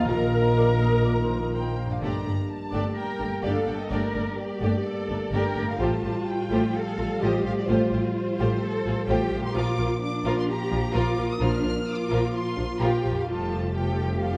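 A triumphant, adventurous cinematic passage in G minor at 128 BPM opens with a brief blend of dark clarinet, mellow cor anglais, silver flute and mellow French horns before they drop out by 2.0 seconds, leaving warm, focused violins to carry the lush melody over a distant second violin line, expressive viola with portamento, close cellos, up-front double basses, dark roomy trombone chords and a very quiet ringing harp, all bathed in a wet scoring-stage reverb as the harmony moves from Bbsus4 through Gmadd9 and Bb to Fadd9.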